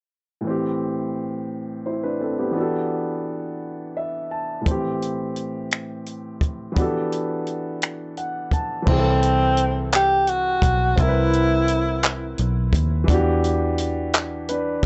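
A slow, straight six-eight R&B groove at 57 BPM sets a late-night, yearning mood in this fragment of a longer piece. It opens on a concert grand piano with deep bass and long sustain, playing fills between Am7 and Em11 chords. The compact cocktail drum kit arrives at 4.7 seconds with finger snaps, handclaps, hi-hat, a punchy kick and dark cymbals. At 8.9 seconds a foam-muted, round electric bass joins, and a roomy tenor saxophone with vibrato and a soft attack sings a brief jazz solo over C6 before the harmony moves to Em9, all in a dry, gritty sound with light reverb and a dulled top end.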